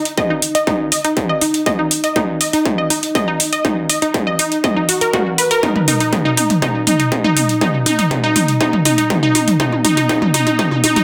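Melodic techno at 121 BPM in a dramatic, melancholic mood, this 11-second cut from a longer piece builds throughout as a techno drum kit of metallic hi-hats and toms drives a fill up front, a distorted, high-pass-filtered electronic kick thumps beneath, and a lush, bright, detuned sawtooth unison pluck spins delayed, sidechain-pumped arpeggios between Eb4 and Eb5 under a moderate digital reverb and a dense, heavily limited master.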